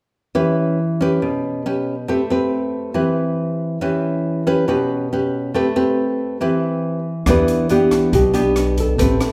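A moderate recital-hall reverb gives this short bossa nova excerpt in E minor, at 139 BPM, an intimate, melancholic air. A dark, full-bodied, thumb-plucked nylon-string guitar plays alone from 0.3 seconds, alternating Em6 and Am9 chords. At 7.3 seconds the harmony settles on Em7 as a second, up-front nylon-string guitar with old strings enters with a woody fingerpicked melody, joined by steel-strung pizzicato upright bass and a jazz kit whose boomy kick sits under hi-hat and rim clicks.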